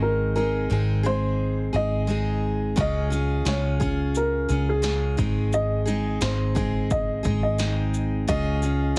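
A dark, woody upright piano with a touch of delay carries the melody over full-bodied picked steel-string acoustic guitar and a round, foam-muted vintage electric bass from the start of this sunny, easy-going acoustic pop excerpt, with a punchy, tape-toned analog drum machine of kick, snare and shaker joining at 2.8 seconds, all under light reverb and a heavily compressed, radio-like sound.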